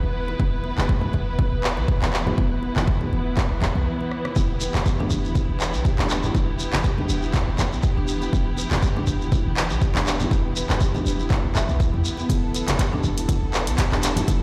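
A punchy electronic kick drives a 121 BPM groove with a light 16th-note swing, entering at 0.4 seconds and sitting up front in this afro house cut from a longer piece. A deep house kit of handclaps, dark hi-hats and rim clicks joins soon after, while low-tuned, thick-skinned congas sit in the background from the start. Underneath, a deep, boomy 808-style bass with a sine body and a noise layer holds E minor and pumps with sidechain compression, as does a distant, lush symphonic string section bowing dark sustained chords with vibrato. After a short break and a drum fill at 4.1 seconds, a marimba played with soft mallets enters at 4.4 seconds with round, woody arpeggios through tape echo, alongside a grainy, mellow shekere. The mood is driving and spiritual, and the whole mix carries a stone-room reverb, as if played on a big sound system in a bare room.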